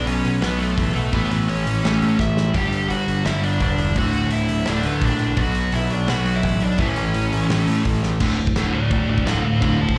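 A dark, double-tracked overdriven rhythm guitar with slapback echo sits up front in this rowdy, energetic punk rock fragment at 170 BPM in D major, driven by a growling, bright overdriven picked bass and a loose, small-room indie drum kit with dark cymbals and a tight kick that holds a half-time feel, adds a fill at 2.2 seconds, and enters at 0.1 seconds, while a high-gain distorted lead guitar with slapback echo carries the melody and breaks into a solo at 8.2 seconds, all heard as a live gig through the venue's PA with club reverb.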